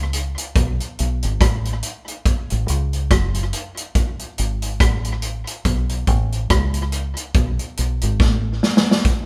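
A live-in-one-room recording with moderate studio reverb frames this tender, smooth lovers rock reggae excerpt at 71 BPM in 4/4, with a swung sixteenth-note feel and tuning set to A4 = 438 Hz. A deep dub fingered electric bass sits up front with a dark, round, foam-muted tone, playing low in its register until it drops out at 8.6 seconds. The vintage drum kit sounds acoustic and warm, with a punchy kick, a medium-tuned snare, rim clicks, hi-hat and a rolled-off top in a small-room setting, and it plays a fill from 8.2 to 9.0 seconds near the end.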